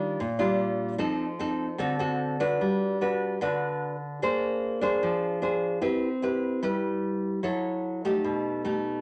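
A lone fingerpicked nylon-string guitar opens this short bossa nova excerpt on a lush Ebmaj9, its full-bodied, deep classical tone sitting up front with audible finger squeak. At a relaxed, breezy 149 BPM in straight 4/4 and G major, tuned to A4 = 435 Hz, it moves through rich chords such as Gmaj7, Bb9, Cmaj7 and B7b13, with the second section arriving at 2.6 seconds. A wet studio reverb surrounds the instrument.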